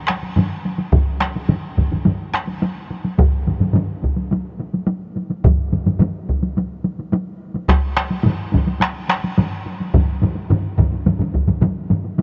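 Three taiko ensembles struck with heavy sticks open this ceremonial, powerful Japanese traditional excerpt in a straight 4/4, two of them up front (one close and dry, the other carrying a small-room ambience) and a third also sounding in a small room, before a louder solo taiko, also close, dry and up front, enters at 0.9 s and plays until 11.5 s, all under a light reverb with a dark, rounded top end.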